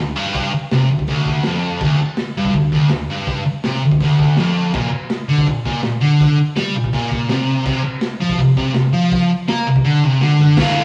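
Garage rock with a gritty, swaggering mood: a double-tracked, overdriven electric guitar sits up front with spring reverb, picking a riff over Dm, Bb and Csus4, while a crunchy, saturated breakbeat drum kit with dark cymbals, a tight kick and a rolled-off top drives along beneath it until a drum fill at 10.2 seconds, all in a stone-room, cassette-taped rehearsal sound cut from a longer piece.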